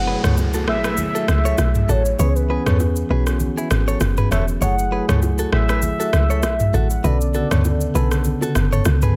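Riding a 99 BPM groove swung on the sixteenths, this sultry, hypnotic afrobeats excerpt in F# minor sets a woody, punchy FM log drum bass up front beneath an electronic afro-pop kit of rim click, shaker and toms heard in a large room, soft-handed bongos and congas, clean tine electric piano chords moving from F#m9 through C#m7 and back to F#m9 before Bm9, a compressed, scooped clean guitar riff with tape echo, a background downlifter ending at 4.6 s, and a velvety sawtooth-and-triangle synth lead with chorus and vibrato singing until 8.3 s, all in a dry, close sound.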